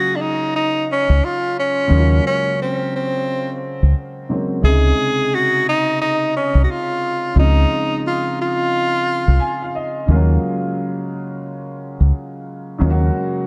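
Swung sixteenths in 4/4 give this cool, mellow hip hop fragment an unhurried lean as the harmony moves from a rootless Ebm11 to Dbmaj7 and back. A tenor saxophone leads up front in jazz style, with vibrato, scooped notes and a smooth top, and analog delay trails its melody until 9.7 seconds. A woody upright piano with long sustain and subtle chorus accompanies it and adds a fill near 9.1 seconds, while a deep, dark, round and punchy fingered electric bass enters up front at 1.1 seconds, the whole group heard in a small room with light reverb.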